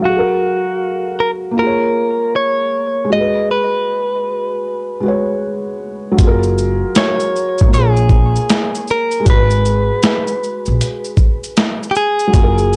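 A 78 BPM pulse in 4/4, swung at 65% on the sixteenths, carries this nostalgic, dreamy lo-fi hip hop excerpt, tuned slightly under standard at A4 = 439 Hz. It opens with a soft, felt-muted upright piano, intimate and mellow with audible action noise, colored by cassette tape and a low-pass filter, while a clean, direct-recorded electric guitar plays the bright, picked melody through its own low-pass filter, and a filter sweep runs across this opening passage. At 6.2 seconds a new section begins as the upright bass and a dusty soul sampler-style drum kit join. The pizzicato bass sounds woody and growly with tube saturation, and the compressed, gritty kit brings a thumpy kick, a medium-tuned snare, hi-hat and shaker, re-recorded in a large room for a tape-toned weight. The chords cycle through F#maj9, A#m7 and G#m7 in both sections, with every part placed up front in a dry, rough hardware sound touched by light reverb until the cut at 12.8 seconds.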